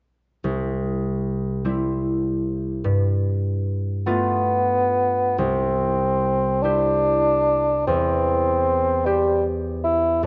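A concert harp opens at 0.4 seconds with mellow, ringing accompaniment, its sound up front and close, as it moves from a C major chord to a G9. This is a tender romantic classical duo in 6/8 at a slow, rubato pace of roughly 43-52 dotted-quarter beats per minute, in C major. At 4.1 seconds the bassoon enters, carrying the melody in a compact middle range with a warm, vintage tone and light vibrato, sitting slightly forward of the harp. A second section begins at 5.4 seconds, with the harmony returning to C and then moving to C over E. Close, detailed microphones capture the fingerpicked harp and the solo bassoon in a light reverb, and the clip, cut from a longer piece, closes with the harp sounding just past the bassoon's final note.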